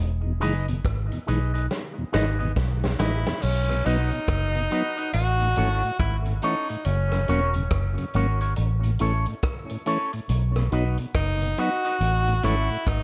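Swung sixteenths in 4/4 drive this sunny roots reggae excerpt, where a dark, round, foam-muted fingered bass sits up front under a vintage drum kit with a punchy kick and rolled-off top, a mellow, lightly overdriven tonewheel organ with chorus vibrato, slow rotary speaker and tape echo, and a twangy, scooped envelope-filtered guitar bathed in lush chorus, until a drum fill from 1.7 s ushers in a bright, forceful tenor saxophone at 3.0 s, its vibrato-laden lead carried on tape echo over a light small-room ambience.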